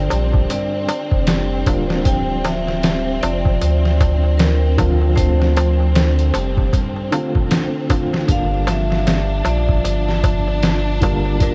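A slow, swung groove of pitched-down, compressed sampler drums sits up front, with a thumpy kick, a medium-tuned snare and hi-hat roughened by vintage 12-bit grit, while a crisp metal-shell darbuka played with soft hands taps quietly in the background; both come in at 0.1 seconds. Beneath them, a deep, round dub sub bass with a fast attack holds the low end firmly forward in the mix. A dark, woody upright piano murmurs its accompaniment from further back, treated with tremolo and tape echo, while a lush, bowed string section sustains smooth chords with gentle vibrato. A slightly broken-up electric guitar picks compressed arpeggios through the same sampler grit and tape echo, and a close-miked vibraphone carries the melody with a bright, ringing tone, its motor off and its echo trailing each note. The harmony moves from Gm7 to Dm7 at 2.1 seconds and back to Gm7 at 8.3 seconds, and light studio reverb and vinyl crackle wrap this melancholic, smoky trip hop fragment, cut from a longer piece.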